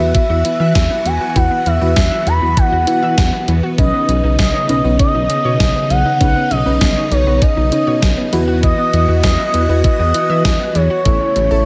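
Nearly everything arrives together at the start: an up-front, nasal synth lead carries the melody over a chorused synth bass, with a gated 80s digital drum machine joining at 0.1 s to lay down a thumpy kick, hi-hat and a gated-reverb snare. This is nostalgic, bright synth-pop at 99 BPM in a straight 4/4, cut from a longer piece, with harmony moving from Esus2 to Badd9, back to Esus2 and landing on A near the end. The lead sings smoothly with vibrato, chorus and digital delay, while the bass sounds glossy, saturated and dark, its pulse-width modulation giving it an evolving, retro edge. A string machine holds lush, sustained chords through a phaser and ensemble chorus, and in the background a dreamy FM electric piano with a soft pad layer and a round, warbling analog pluck playing arpeggios fill out the texture. Light reverb and a digital ambience give the whole a polished, airy sheen.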